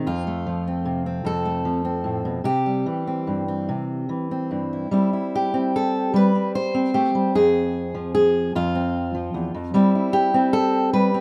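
In a loose, rubato 6/8 at about 50 BPM, this short folk excerpt features a solo fingerpicked steel-string acoustic guitar, warm and up front with an auditorium character under light reverb, ranging from E2 to C5 across a pastoral progression of F, C, Gsus4, Fm and Gsus4, with the second section beginning at 4.9 seconds and the guitar playing throughout the 11.2 seconds.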